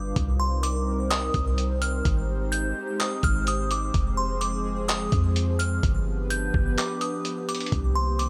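A deep, boomy 808-style bass sits up front in this atmospheric cloud-rap fragment, its sine tone carrying a noise layer and a fast attack that decays mellowly across the low register. Moving at 127 BPM in 4/4 with a half-time feel, the piece stays in C minor, cycling through Cm7, Abmaj7, Fm and G7 before returning to Cm7. A trip hop sampler-style drum kit enters at 0.2 seconds with a thumpy kick, hi-hat and handclaps, sounding compressed, pitched down, muffled and tape-warm, and it also sits forward in the mix. Above, an airy, breathy pad holds soft, nasal, detuned chords with a slow attack and long release, treated with chorus and sidechain pumping. A delicate, tinkling FM tine bell traces a bright high melody through chorus, phaser and digital delay. A short break from 6.8 to 7.7 seconds punctuates this ethereal, spacious excerpt, which sits in a digital ambience.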